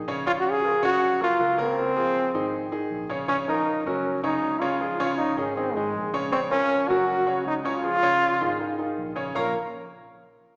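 Salsa in Bb minor, this passionate, danceable cut from a longer piece moves at a quick 158 BPM in straight 4/4. A vintage muted fingered electric bass opens at 0.0 s, its dark, round, foam-muted tone sitting low and quiet beneath the other parts. A clear grand piano enters at 0.1 s as up-front accompaniment, intimate and polished, with audible action noise and long sustain. At 0.3 s a bright trombone takes the solo melody, punchy and close-miked with pop-style vibrato, standing at the front of the mix. The harmony cycles through Bbm, Gb, Db and Absus2, and a heavy scoring-stage reverb gives the sound the feel of a church or concert hall heard through a small speaker.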